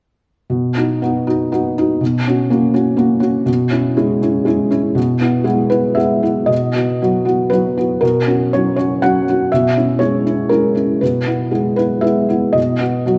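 Bathed in a wet recital-hall reverb, this tender, intimate passage of neoclassical minimalist piano in B major moves at a rubato 120 BPM in 3/4, with a soft, felt-muted upright piano placed up front, its mellow, short-sustained tone and audible action noise carrying a chord cycle of B, F#/B, C#m/B and E/B over a B in the bass, heard twice between 0.5 and 13.2 seconds, with the second pass starting at 6.5 seconds, before it is cut from the longer piece.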